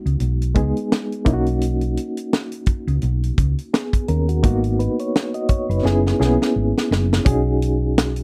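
A dry, close 1970s-style studio sound frames this short slice of lush, romantic soul in B major, moving at an unhurried 85 BPM with a gentle 16th-note swing. A reedy electric piano with a fast tremolo carries the accompaniment through rich chords, Emaj9, Bmaj9, G#m9 and F#9sus4, before settling on B69. Beneath it sit a round, dark hollow-body bass, fingered and amped, and a tight, small-room funk kit with a high-tuned snare that plays a drum fill from 5.8 to 7.3 seconds.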